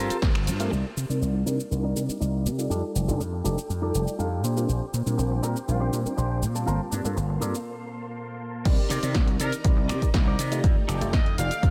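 Over a straight 4/4 pulse at 121 BPM, a punchy analog drum machine with a tape-warm snare, hi-hat, finger snaps, cabasa and crash cymbal pumps against the sidechain, while an up-front electronic kick hits briefly at 0.2 seconds before returning for the drop at 8.7 seconds. This short excerpt of filtered disco house in C dorian, tuned to A4 = 444 Hz, feels groovy and funky. A gritty, overdriven slap bass sits up front, joined by a twangy, compressed clean electric guitar riff with 12-bit sampler grit and a worn, slightly out-of-tune tine electric piano colored by phaser. A lush sawtooth string machine with ensemble chorus holds sustained chords in the background, all of these parts pumping and passing through a low-pass filter that sweeps from 0.7 to 8.7 seconds. A tight trumpet section with a smooth top enters at 5.4 seconds to carry the melody over a progression of Gm11, Cm9, F13 and Bb69 chords, and after a break the drop arrives on Cm9 moving to F13, all bathed in light reverb.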